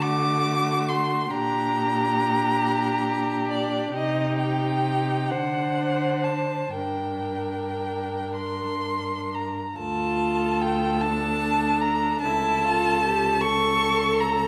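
A recital hall's lingering reverb surrounds this solemn, yearning slow romantic movement for string quartet, cut from a longer piece and unfolding in a rubato 6/8, as an up-front, rich first violin sings a smooth, even vibrato melody high above a dark second violin line, a focused viola accompaniment and a close cello bass, all four bowed players moving into a new section at 9.8 s.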